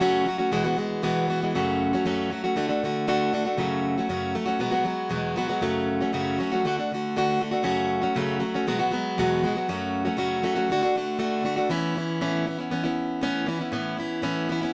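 A straight, steady four-beat pulse carries this rock passage, cut from a longer piece and played by a single picked, plugged-in steel-string acoustic guitar placed up front. The mood is jangly and open-road, with the guitar cycling through F#m, Eadd9 and D for the first 11.7 seconds before the music shifts to Aadd9, which holds until the close at 14.7 seconds. The guitar's tone is boxy and warm, and finger squeak on the strings adds a close, human touch. A moderate club reverb gives the instrument a small-room ambience around its direct sound.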